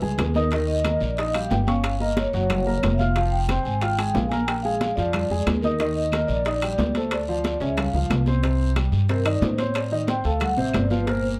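Sophisticated and driving, this short Afro-Cuban jazz excerpt in C minor moves at a brisk 182 BPM in straight 4/4, cut from a longer piece. A mellow vibraphone played with soft mallets carries the melody with a metallic, ringing tone and fast motor vibrato, sitting just forward in the mix before taking a solo from 8.4 seconds. Beneath it, an intimate grand piano supplies the accompaniment with its action noise audible, while an up-front pizzicato upright bass on steel strings gives a woody low end. The percussion is layered: ringing, high-tuned congas and tight, compressed, saturated bongos played with soft hands sit in the background, close and dry metal-shell timbales ring out, and woody claves and a raspy guiro, both entering at 0.2 seconds, add texture. The harmony wanders through colorful changes such as Fmadd9, Bb7 and Ebmaj7 before reaching Cm as the solo begins, all wrapped in light reverb and a dark, warm production.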